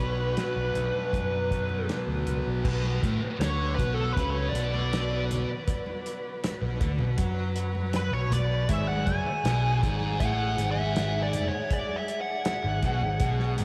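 A fuzz lead guitar, up front and colored by wah, distortion and analog delay, carries the melody and breaks into a solo at 2.6 seconds in this dark, mysterious psychedelic rock excerpt at 80 BPM in B dorian, moving from Bm to F#madd9 at 8.7 seconds. Beneath it, a double-tracked thick fuzz guitar with phaser plays the riff and a round fingered electric bass anchors the low end. A cloth-damped, thuddy drum kit with dark cymbals, a fat snare and a tight kick enters at 0.4 seconds, very quiet bright congas add percussion, and a tonewheel organ with slow rotary speaker holds sustained chords in the background, all within a dreamy mix soaked in huge ambient reverb.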